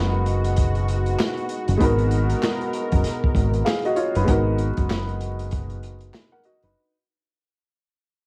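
A woody, slightly detuned upright piano accompanies this reflective, dark boom-bap hip-hop excerpt, its vintage tone softened by cassette tape saturation, filtering and plate reverb as it voices a G#m7 in G# minor. A lush, thick unison pad with a nasal sawtooth edge, slow attack and chorus shimmer sustains chords beneath it until 4.3 seconds. A deep, round fingered electric bass sits up front on low notes between F#1 and G#1. At 0.3 seconds a crunchy breakbeat kit enters with a tight kick, a medium-tuned snare, handclaps and hi-hat, gritty and cassette-saturated with a rolled-off top. The groove moves at 97 BPM in 4/4 with a 16th-note swing. The excerpt carries the hazy character of a home cassette recording with vinyl crackle and light reverb, and it fades out from 4.3 seconds as it moves into its second section.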